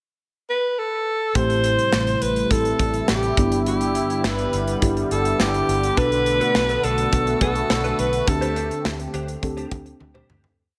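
A bright alto saxophone leads this short, nostalgic and dramatic 1980s-style pop piece, stepping up front in a brief pickup before the band arrives at 1.4 seconds and then spinning hook-like motif phrases with pop-style vibrato. Beneath it, a mellow FM electric piano pushes soft, round chords in close voicing, colored by chorus and phaser, while a sweeping sawtooth pad with a slow attack and filter swell sustains detuned harmony behind it. A dark, foam-muted fingered bass drives steady eighth notes, and an acoustic drum kit with a punchy kick and medium-tuned snare sits forward with a big backbeat. From 6.0 seconds, a clean, direct-recorded electric guitar adds a funk-style picked rhythm riff in the background, treated with ensemble chorus and analog delay. The dreamy mix is soaked in plate reverb, moving from Am7 through Em7/G and Bm7 to a D7sus4 as the track fades out, ending on a drum fill at 10.0 seconds.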